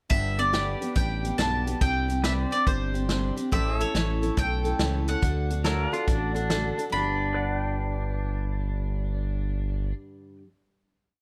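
Nostalgic and down-home, this short honky-tonk and classic country piece swings in 4/4 through a single verse that settles onto a held final chord at 6.9 seconds. A bright, woody mandolin carries the motif-based melody up front, while a full-bodied dreadnought acoustic guitar strums eighths in open chord shapes, a smooth sawtooth-and-triangle synth bass plays a two-beat root-and-fifth line with walk-ups, and a punchy natural drum kit keeps a country two groove until 6.9 seconds. A clean, compressed pedal steel guitar holds gliding chords with volume swells throughout, and a second, twangy pedal steel line enters at 5.6 seconds with blues licks, all captured close and dry in crisp detail.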